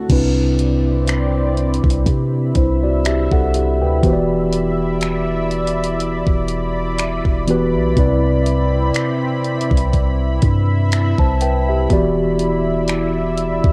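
A slow 61 BPM groove in 4/4 with a light swing on the sixteenths sets a longing, moody tone for this contemporary R&B fragment cut from a longer piece. A gated 80s digital drum machine sits up front with a thumpy kick, finger snaps, hi-hat and crash cymbal, its sampler-style sound overdriven and re-recorded in a small room. Beneath it, a long sustained 808-style bass enters at 0.1 seconds, deep and sine-like with a fast attack and a dark, decaying tail. A mellow tine electric piano carries the accompaniment up front, clean and direct, while a lush, thick unison pad of detuned sawtooth voices holds sustained chords with a slow attack, chorus and sidechain pumping. A bright, compressed clean electric guitar picks brief arpeggios in the background, with tape echo, only until 0.7 seconds. The harmony moves between Cmaj9 and Em7, and the whole home cassette recording carries light reverb and a soft tape character on the keys, pad and guitar.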